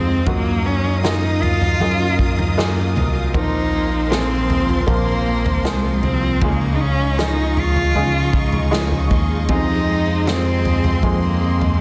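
A dark, bowed solo cello sits up front and carries the melody, its expressive vibrato and portamento giving this slow pop ballad in Bb minor a heartbroken, melancholic cast at 78 BPM in a straight 4/4. Beneath it, a bell-like tine electric piano takes the unusual role of bass, bright and direct with a phaser coloring its low notes, while a felt-muted upright piano plays soft, intimate accompaniment with audible action noise and short sustain. A lush symphonic string section holds sustained chords high above, and a full-bodied jumbo steel-string acoustic guitar picks arpeggios further back in the mix. An unplugged drum kit enters at 0.3 seconds, its punchy kick, medium-tuned snare and toms played with bundle sticks and heard at a roomy distance. The harmony moves through Ebmadd9/Gb, Bbsus2, Dbadd9 and Fm7 under light reverb and small-room ambience, with a dense, heavily limited modern master on this fragment cut from a longer piece.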